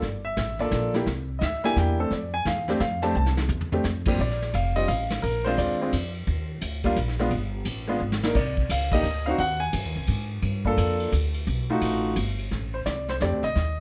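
A swinging jazz piano trio in 3/4 at 173 BPM, this excerpt moves from F major into Bb major at 4.2 s, with an intimate, up-front concert grand carrying the melody over a rich chord progression; its deep bass, long sustain and audible action noise stand out, and it opens with a solo passage. A woody, thumpy pizzicato upright bass sits close beside it, while a dark, smooth brush kit with dark-toned cymbals, a tight kick and a rolled-off top adds two short fills. A band accent lands at 8.9 s, all within light reverb and a warm swing.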